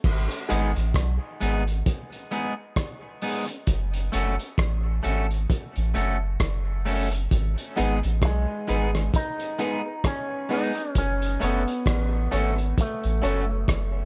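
A muffled, lo-fi small-room sound frames this heavy, spacious dub reggae excerpt, cut from a longer piece and moving at a slow 66 BPM in G# phrygian with a swung sixteenth-note feel. A deep, round sub bass sits up front from the start, its soft tone anchoring the shift between G#m and F#m, while a cloth-damped, thuddy drum kit with a tight kick, rim clicks, hi-hat and dark crash cymbals adds a gritty, saturated weight. From 0.5 seconds an electric guitar at the edge of break-up plays twangy, picked accompaniment carrying dub echo, and a clear, woody upright piano, slightly detuned and set in the background, drops a brief stab before returning at 7.8 seconds with more echoed stabs. At 8.2 seconds a clean electric guitar shaped by an envelope filter takes up the melody, its picked lines also trailing dub echo. The opening stretch acts as a break, giving the later entries of piano and melody guitar extra space in the room.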